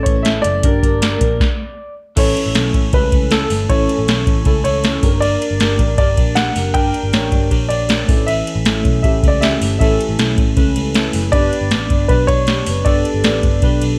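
A straight 4/4 pulse from an overdriven, up-front vintage rhythm box with a deep kick, crisp snare and metallic hats drives this breezy, nostalgic jangly indie pop fragment through a brief stop from 1.4 to 2.2 seconds, as a round, foam-muted picked bass anchors the low end, a bright, twangy twelve-string electric guitar plays arpeggios with slapback echo in the background, warbling lo-fi synth keys with chorus supply mellow accompaniment, and a woody upright piano carries the melody with its own slapback echo, all set in a light reverb.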